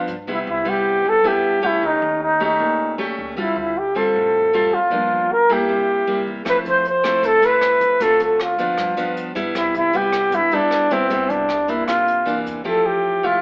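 A breathy, whispered flugelhorn carries the melody up front with light vibrato and a soft attack, playing a romantic, relaxed bossa nova line in C major at 155 BPM over fingerpicked nylon-string guitar and a woody, thumpy pizzicato upright bass sitting in the background. Brushed drums with a boomy kick, hi-hat and rim click tap briefly at the start and then return at 6.5 s, as the chords move from Cmaj7 through Eb7#11 and Dm7 toward a closing Fmaj9 at 12.6 s. The band sounds as if it is playing live in one room, bathed in wet studio reverb and an AM radio tone, in this short excerpt cut from a longer piece.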